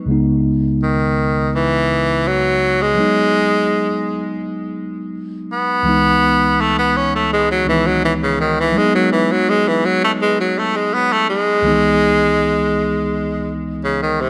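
The rhythm sits in a straight, unhurried 4/4 reggae groove, and the mood is smooth and bittersweet. A mellow tine electric piano carries the accompaniment from the start, its clean tone heard through the instrument's built-in speakers as it moves between two minor seventh chords. At 0.8 seconds an edgy tenor saxophone takes the melody, placed up front as a solo voice with a light vibrato and a pop-style delivery, colored by tape echo. A moderate plate reverb with a 2.6-second tail gives the pair a sense of space. The fragment is cut from a longer piece and holds a single section until both parts stop at 14.3 seconds.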